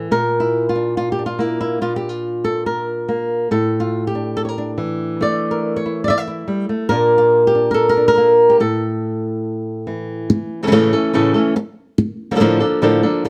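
Flamenco in A phrygian dominant at 141 BPM, this intense, fiery cut from a longer piece features a lone fingerpicked flamenco guitar, acoustic and dark in tone, placed up front and spanning A2 to E5. Its harmony circles between Bb and A-rooted chords, Asus4 and A5 among them, before a second section begins at 10.3 seconds. A light reverb gives the room a touch of space, and the tuning sits slightly high at A4 = 442 Hz.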